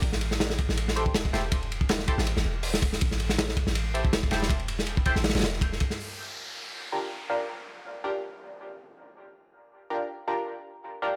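A swung, crunchy breakbeat of kick, snare, hi-hat and ride cymbal drives this raw, dark drum and bass and jungle cut, its kit gritty and saturated with dark cymbals, a tight kick and a rolled-off top, over a deep, boomy 808-style bass that decays mellowly beneath it. From 1.0 s a nasal, band-passed sawtooth chord stab sits up front, coloured by phaser, subtle chorus and dub echo, and it carries on after the drums stop at 6.0 s and the bass drops out just before. As the harmony moves to Gm7, an electronic downlifter sweeps through from 6.0 to 9.0 s in a light, small-room ambience.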